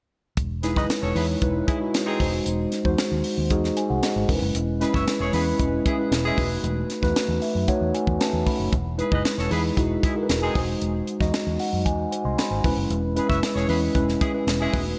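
Polished 1980s jazz-funk pop at 115 BPM in E major, upbeat and glossy, this excerpt opens on a tight, dry funk drum kit with a high-tuned snare and hi-hat, sitting up front over a dark, round, foam-muted fingered electric bass. A mellow, clean tine electric piano carries the accompaniment through analog chorus, adding fills at 7.2 and 11.3 seconds. Meanwhile a smooth-topped horn section with light vibrato and octave doubling plays a tight second line over an Emaj7, G#7/E, C#m7/E, B7/E progression, all set in a lush hall reverb with bright digital sheen.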